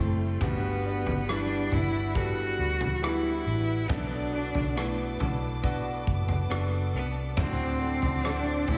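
This heartfelt, emotional pop ballad fragment opens with a clear, bowed solo cello carrying the melody up front, its vibrato intense and its top smooth, over a natural-sounding grand piano accompaniment, both touched by slapback echo. Behind them, a woody studio string section holds sustained chords in the background, while a clean, compressed electric guitar recorded direct picks arpeggios further back, colored by lush chorus, slapback and tape echo. A vintage foam-muted fingered bass sits forward in the mix with a round, punchy, amped tone. At 0.4 seconds a loose indie drum kit enters, distant and roomy, with a tight kick, rim clicks and toms. A moderate hall reverb gives the mix a big arena sound alongside small room ambience.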